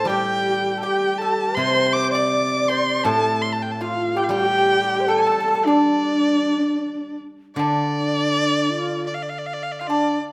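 A graceful, tender passage of Chinese traditional chamber music opens with the full ensemble at once, moving in a loose, rubato 2/4 through a wet recital hall. Up front, a single erhu carries the melody high in its register, its rich, smooth, even bowed tone shaped by vibrato and portamento. Beneath it, a bamboo xiao adds a breathy, reedy second line with soft attacks and rolled-off highs, while a pipa played with fingerpicks offers a dry, percussive counterpart. A horsehead fiddle sits in the background with a husky, woody voice on horsehair strings until it drops away at 7.2 seconds, just before the music turns to a new section at 7.6 seconds. Low in the texture, a steel-string zither provides ringing, silvery accompaniment until 9.8 seconds, as this fragment of a longer piece draws to its close.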